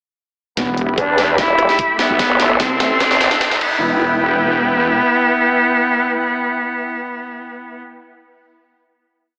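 Heard through a thin, AM-radio-style filter with a moderate digital room reverb, this short, complete piece of heavy wobble dubstep feels menacing and boxed-in. It moves at 148 BPM in a half-time 4/4 in E minor, with most parts starting at 0.6 seconds over an Em, Am, Em progression. Up front, a single bowed cello plays a repeating riff with vibrato and a smooth top, colored by gritty vintage 12-bit sampling, a low-pass filter that sweeps through the build, and tape echo, while a lush, detuned supersaw pad pumps beneath it. Two wobble basses carry the low end with chorus and overdrive: a heavy, detuned sawtooth-and-sine bass with a mellow edge, and a nasal, resonant vowel-sweep bass, pushed forward, that enters at 1.0 seconds and answers it with changing wobble speeds. A layered electronic kit with a huge snare, closed hats, rim clicks and crashes drives a drum fill through the build alongside a knocking, tape-warm kick, as a very quiet electronic riser, arriving at 1.7 seconds, leads into the final hit at 3.8 seconds. 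The first wobble bass carries on until 5.0 seconds, and the cello and pad ring on together until 7.8 seconds.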